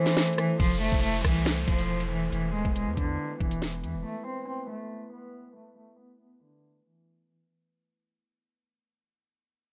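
Over a half-time 4/4 drill pulse at 139 BPM, this dark, tense hip hop fragment in A harmonic minor sets an up-front, reedy gut-string cello carrying the bowed melody above smooth, ethereal glass harmonica chords, while a soft, detuned octave-layered synth lead with chorus, phaser and tape echo sounds only through the opening break as tape-warm drums with a knocking kick, sharp snare and metallic hats come in at 0.1 seconds, a deep, mellow 808-style bass and an electronic downlifter join at 0.6 seconds, and the drums stop at 3.9 seconds while a filter sweep and fade-out carry the dry mix to its end.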